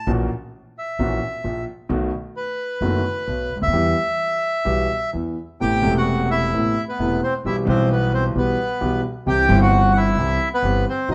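A reedy, bright bandoneon sits up front with the melody in this passionate, tense tango passage in E minor, cut from a longer piece and moving at 131 BPM in 4/4 with a rubato feel. A smooth concert grand piano with a deep low end accompanies it up front, while a woody, growly upright bass plays pizzicato underneath, all in light reverb. Around 5.6 seconds the music moves into a new section, its harmony shifting from B7 and Em toward Amadd9 and finally C.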